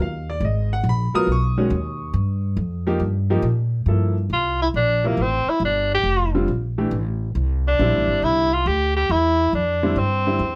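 Light reverb surrounds this hypnotic, open modal jazz excerpt at a swung 138 BPM in 4/4, where an intimate baby grand piano, with its action noise audible, lays down the harmony alongside a woody, thumpy pizzicato upright bass on gut strings from the first second. At 4.3 s a clear, vintage-toned tenor saxophone enters up front with a vibrato-tinged solo melody, just after the harmony settles into C mixolydian at 3.9 s.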